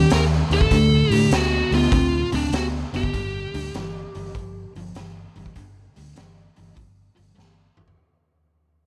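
An up-front, overdriven lead guitar bites through the opening of this gritty, heavy blues-rock and southern-rock fragment at 99 BPM with a swung feel, carrying its melody until 4.7 s over a bright, double-tracked distorted riff guitar, a dark, round, foam-muted bass and a saturated garage drum kit with a punchy kick, high-tuned snare and pumping stone-room sound, as the cut fades out and the drums play a fill from 7.4 s.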